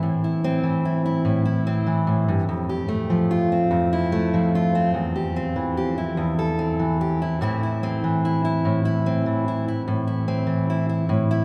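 A fingerpicked steel-string acoustic guitar plays alone and up front in this wistful, haunting folk excerpt in a slow 6/8, its warm tone and finger squeaks hanging in a long cathedral reverb as it moves from Am through F and C/E back to Am over about 11.4 seconds.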